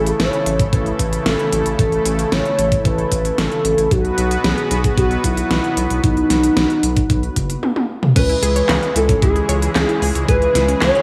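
A smooth, warbling sawtooth lead with vibrato, portamento, chorus and digital delay sings a nostalgic, nocturnal synthwave melody in C# minor at 113 BPM over a bright, detuned analog pad with tremolo and sidechain pumping, a round, deep analog bass, and an up-front, tape-warm pop drum kit with fat snare, crisp hats, handclaps and gated reverb alongside a knocking electronic kick, until a drum fill at 7.6 seconds leads to 8.2 seconds, where a very quiet, pure FM synth bell and a lush, detuned unison pluck playing delayed arpeggios join in this short excerpt from a longer piece.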